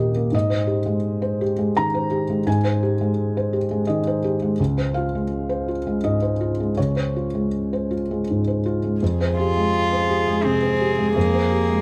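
A felt-muted upright piano opens this fragile, reflective neoclassical fragment in F minor at 84 BPM in a rubato 3/4, its dark, mellow tone sitting up front with audible action noise over Abmaj7 and Dbmaj7 harmonies, until a sul tasto viola with light vibrato joins at 9.0 seconds on an Fmadd9 chord and a pure, floating, nasal cello adds a second line at 9.4 seconds, all in light reverb before the cut at 11.8 seconds.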